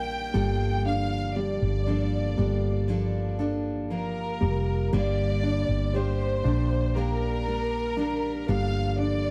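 Longing and melancholic, this brief pop excerpt moves at a slow 59 BPM in a straight 4/4, cut from a longer piece. A rich studio violin section carries the melody, its bowed ensemble tone showing vibrato and a biting intensity beneath a smooth top. A clear upright piano supplies polished, present accompaniment, while a picked steel-string acoustic guitar adds bright arpeggios with fresh strings, a full jumbo body and audible finger squeak. Up front, a woody fretless electric bass sounds dark, round and hollow, dressed in lush chorus. The harmony settles on Bbmaj7/G, shifts to Gm at 4.9 seconds and returns to Bbmaj7/G at 8.5 seconds, all captured in a dry, close 1970s-style studio sound.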